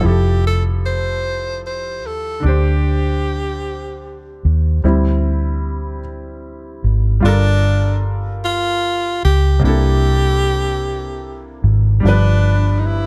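Sultry and late-night, this slow six-eight R&B cut in G dorian moves at 50 BPM, with a breathy, close-miked tenor saxophone carrying the jazz-style melody up front, colored by vibrato and a slapback echo. A clear, natural grand piano accompanies throughout and takes a solo turn from 4.8 to 7.2 seconds, while a vintage foam-muted fingered electric bass sits round, punchy and amped beneath. The dark, studio-ambient production frames a chord path running from Fmaj9 and D7sus4 through Gm9 and C13 to a closing G7, in a fragment cut from a longer piece.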